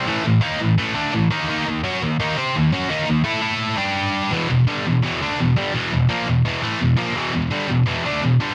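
A dry, dark production puts a single double-tracked electric guitar up front, its scooped, high-gain distortion biting with a bright, picked edge in this heavy, aggressive metal fragment cut from a longer piece. The guitar plays alone throughout, moving through power chords in a straight, driving four-beat feel before shifting into a second passage at 4.3 seconds that settles on a minor chord.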